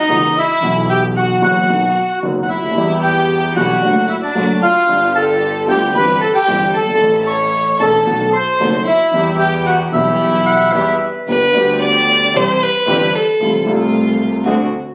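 Captured on a phone in the room and dressed in moderate studio reverb and compression, this short tango cut from a longer piece feels close and a little boxy. It moves at 113 BPM in 4/4 with a rubato feel, dramatic and melancholic, starting in E minor. A reedy, dark bandoneon carries the melody up front, shadowed by a rich, expressive bowed violin with vibrato and portamento, while a woody upright piano with audible action noise and a nasal, earthy bowed double bass hold down the accompaniment. From 2.8 seconds a distant string section with a gut-string, period-style tone adds stabs in the background, and at 10.5 seconds a raspy, growling jazz-style clarinet with scooped notes slips in briefly. At 11.3 seconds the music turns to G major and the violin takes a solo over the piano, bass and strings.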